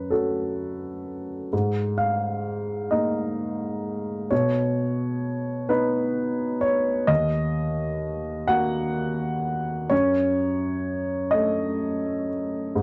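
Reflective and melancholic, this neoclassical minimalist piano excerpt in a rubato 6/8 features a solo upright piano, woody and up front with long sustain, moving through Gbm, Absus2, Badd9 and Ebm before returning to Gbm in a dry, close 1970s-style studio sound.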